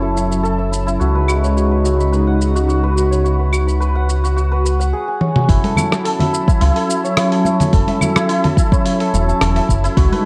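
A detuned, chorused analog pad with tremolo and sidechain pumping holds sustained F#m7 and C#7sus4 chords beside shimmering santur arpeggios trailed by digital delay and a round, deep analog bass in this hypnotic organic downtempo excerpt at 107 BPM in F# dorian, while a gritty, compressed sampler-style kit of claves, hi-hat, rim click, shaker and toms plays under a filter sweep and a fill at 5.2 seconds before a layered electronic kick and ringing, soft-handed congas join at 5.5 and 5.6 seconds, all set in light reverb with a dark production.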